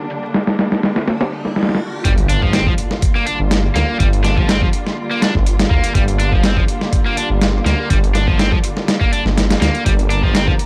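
An overdriven, sampler-style drum kit with a thumpy kick and low-pass filtered hits drives this energetic breakbeat excerpt in G minor at 123 BPM, its sixteenths lightly swung. Veiled, muted strings hold sustained chords in the background with sidechain pumping while an electronic riser plays. At 2.1 seconds the drop lands on an impact as a menacing, detuned saw bass and a bright, cranked stack guitar riff with analog delay enter, all set in a dry, gritty hardware sound dusted with vinyl crackle.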